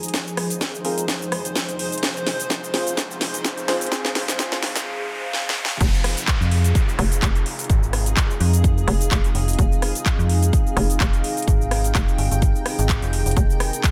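A gritty, swaggering bass house excerpt opens on a blurred, evolving granular cloud pad and a tape-warm house drum kit with cracking snare, metallic hats, handclaps, cabasa, rim click and crash, with a punchy electronic kick joining at once. A hollow, chorused organ stab with 12-bit sampler grit and tape echo, a moody sawtooth analog pad with phaser, and a background riser and downlifter build under filter sweeps and drum fills. The drop at 5.8 seconds brings in a bouncy, tube-saturated FM bass, with a dark, digital FM bass following shortly after, both pumping against the kick in a dry, up-front mix.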